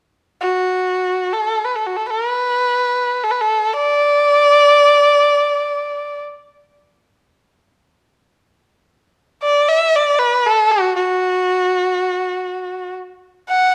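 Chinese traditional music in free time and D gong mode, tuned to A4 = 435 Hz, this graceful, pastoral fragment of a longer piece features a single bowed erhu up front carrying the melody between F#4 and F#5 from 0.4 s to 13.7 s, its rich, smooth, even tone shaded with vibrato and portamento, moving into a new section at 9.4 s within a moderate recital-hall reverb of 1.4 seconds.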